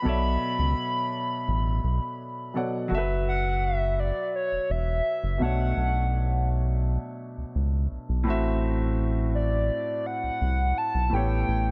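A hollow, woody synth lead with a clarinet-like tone opens this late-night, sensual contemporary R&B fragment, carrying the melody alongside a natural-sounding grand piano that plays the accompaniment. A fraction of a second later, at 0.1 seconds, a round, deep analog bass enters, dark and up front, and it is the most prominent part in the mix. The tempo is an unhurried 84 BPM in a straight 4/4, set in B minor, with the harmony moving from Bm11 to F#7sus4 at 2.9 seconds, then back through Bm11, D7/A and an A9 near the close. The lead is soft yet full-bodied, with vibrato, chorus and a digital delay that give it a shimmering, echoing presence in its upper register. All three parts play through to the end of the cut, placed close within a studio reverb that adds a polished sheen.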